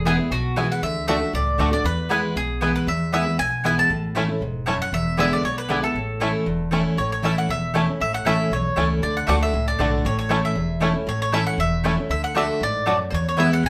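A picked, woody mandolin carries the melody up front from the start of this lively, virtuosic bluegrass excerpt at 234 BPM in A major, over a bright dreadnought guitar with fresh strings and a thumpy pizzicato upright bass, while a twangy, percussive fingerpicked banjo adds a second melody in the background from 0.1 seconds and another double-strung mandolin plays stabs, in a wet studio reverb.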